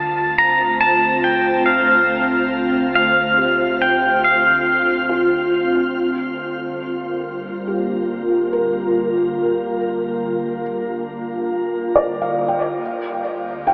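A bright, twangy pedal steel guitar carries the melody up front with slide and volume swells, trailing a diffuse ambient delay before it drops away at 5.5 s in this serene, spacious ambient piece cut from a longer work. Alongside it, a glassy FM pad holds sustained chords moving from Dm7 to Gm7, shimmering with ensemble chorus and phaser. A felt-muted upright piano fades in with soft, intimate arpeggios and audible action noise, while a round sine sub bass sits deep in the background, and the whole mix is bathed in a lush shimmer reverb with a lo-fi AM radio tint.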